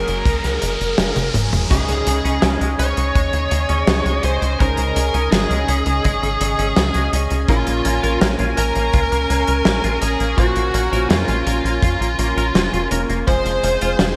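A straight 4/4 pulse at 83 BPM drives this moody, nostalgic synthwave excerpt, with a punchy, dark kick and a big rock drum kit whose fat snare, toms, hi-hat and crash sit in a big room under gated reverb. A tight, nasal sequencer bass with a fast attack and filter pluck holds the low end up front, while a shimmering chorused pulse-width pad, pumping with sidechain, sustains chords that move from Gbadd9 through Dbsus2 and Bbm to Fm. A smooth overdriven lead guitar carries the melody from the start with delay, over mellow stabs from a dark concert grand piano set in the background. The opening 1.7 seconds build on an electronic riser and a drum fill, after which an airy, dreamy synth lead adds a soft second line with vibrato and portamento, and a twangy, clean electric guitar picks a riff through analog chorus and digital delay. Lush hall reverb and a bright 1980s-style digital sheen frame the whole piece, which is cut from a longer track.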